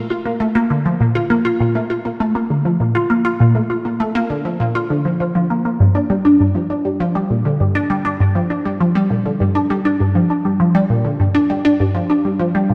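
Bathed in a lush hall reverb, this hypnotic, mysterious ambient excerpt features a lone resonant blip pluck, squelchy and detuned with a bright, up-front bite, ranging from G2 to F4 through phaser, lush chorus and tape echo, with a new section beginning at 5.8 seconds.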